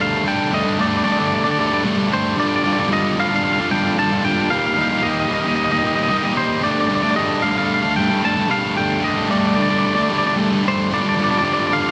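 A double-tracked fuzz guitar sits up front with a thick, distorted riff through this brooding, cathartic 12-second rock clip in G minor at 112 BPM, while a clean, twangy, compressed electric guitar carries the melody through analog delay, all of it soaked in a huge, dreamy ambient reverb over chords that move from Gsus2 through Dm/G and Eb/G.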